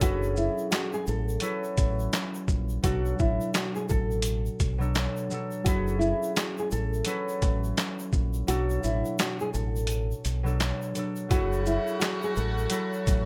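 With light reverb and a swung feel, this gritty, reflective boom-bap hip-hop excerpt sets a dark, thumb-plucked nylon-string guitar melody with finger squeak over ringing, fingerpicked concert harp carrying cassette-tape color, a round, deep dub fingered electric bass and a compressed, pitched-down sampler-style drum kit of thumpy kick (muted from 8.5 to 11.3 seconds), medium-tuned snare, handclaps, hi-hat and shaker, with a saturated tube shaker tucked in the background, before an edgy, vibrato-laden jazz saxophone section arrives at 11.3 seconds with delayed stabs.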